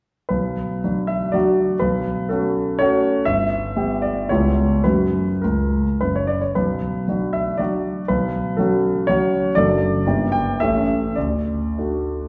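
Dotted rhythms drive this romantic triple-time dance in 3/4, its rubato letting the tempo drift between 90 and 133 BPM as a wistful, nostalgic mood settles over B minor. A solo grand piano, warm and up front, plays from 0.3 to 12.3 seconds across a span from F#1 to G5. The piano sits in a wet recital-hall reverb heard from further back in the room, and the harmony turns from B minor toward a close on D major at 11.2 seconds in this fragment cut from a longer piece.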